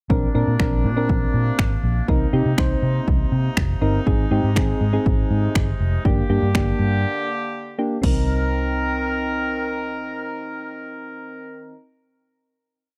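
A confident, bittersweet dance-pop piece in C minor at 121 BPM opens at once with a punchy analog drum machine laying down a dry four-on-the-floor beat of kick, finger snaps and crash cymbal, under a round, foam-muted vintage electric bass playing octave lines with slides. Soft, chorused electric-piano-like synth keys sit up front with syncopated, close-voiced chord stabs, while a woodwind section holds tight, classical-style sustained chords, and the bass, keys and woodwinds all pulse with sidechain pumping through a progression of Bbadd9, Cm7, Ab and Gm. After a break at 7.0 seconds the drums drop out at 8.1 seconds, leaving a final Cm7 chord to ring in the close, dry 1970s-style studio sound until about 11.8 seconds.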